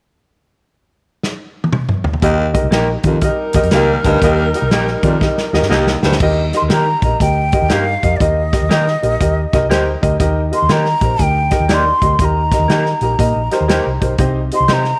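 A small room with light reverb frames this joyful, swinging 1960s-style soul piece, which opens on a drum fill from a natural kit with a punchy kick before the band arrives at 2.2 seconds. A raspy, gritty baritone saxophone riff and a vibrato-rich saxophone section with tape echo ride over a round, foam-muted electric bass, an up-front baby grand piano and twangy, slightly broken-up guitar stabs from a small old amp. The saxophones drop out, and from 6.6 seconds a breathy, unsteady jazz flute carries the melody to the end.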